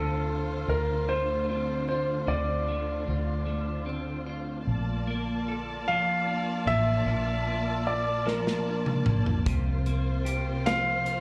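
A tender, romantic six-eight pop ballad at 50 BPM, captured as a live club performance through the venue's PA, moves from Dm7 to Bbmaj7 and settles on C7sus4 near the end of this short cut. An intimate, up-front concert grand carries the melody with long sustain, audible action noise and a touch of slapback and tape echo, over a clean, compressed, double-tracked electric guitar, lush bowed strings with vibrato and portamento set at a distance, and a round, foam-muted fingered bass. A dark, smooth studio drum kit with a tight kick enters at 8.3 s with a fill that runs to 9.5 s.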